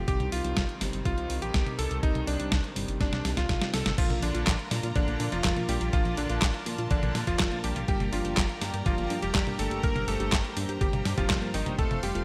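Italo disco at 123 BPM in G minor, danceable and nostalgic, in which a bright, cutting electric grand piano with a clangy low end carries the melody through digital delay over a glossy, saturated chorused synth bass, a thumpy electronic kick and an up-front, tape-warm 8-bit drum machine of snare, handclaps, hi-hat, toms and crash, while a bell-like tine electric piano adds stabs and a biting studio string section holds sustained chords in the background. A drum fill arrives at 3.0 seconds, a very quiet nasal, phased analog pluck joins with arpeggios at 4.0 seconds as the chords move from Cm through Bb to Gm, and the whole bright 1980s-style digital production sits in a lush hall reverb.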